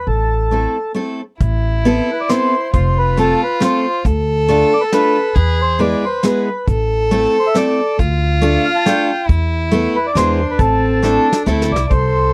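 A mellow, reedy accordion opens this nostalgic, bittersweet musette waltz in A minor at 137 BPM, with a woody, thumpy pizzicato upright bass and a picked steel-string acoustic guitar, finger squeaks audible, joining within the first second. At 1.4 seconds a single bowed violin with gut-string tone and light vibrato adds a second line while a soft brush kit with a fat snare and punchy kick settles into a swung 3/4, playing a drum fill at 11.0 seconds. The sound is dry and close, in the manner of a 1970s studio, and the recording is cut from a longer piece.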